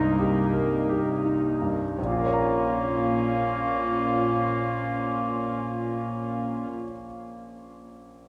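A cinematic fragment, longing and bittersweet, moving slowly in free rubato time and easing back further over its first 2 seconds as the harmony passes from Cm7 to Bbm. A brilliant, polished concert grand piano sits up front with deep bass, while a vintage-toned clarinet carries a second line over a floating, sul tasto viola section and a soft-attacked, close cello section holding the bass. The ensemble rings out in a vast, echoing cathedral space, and the piano plays alone from 6.7 seconds until it stops at 8.3 seconds.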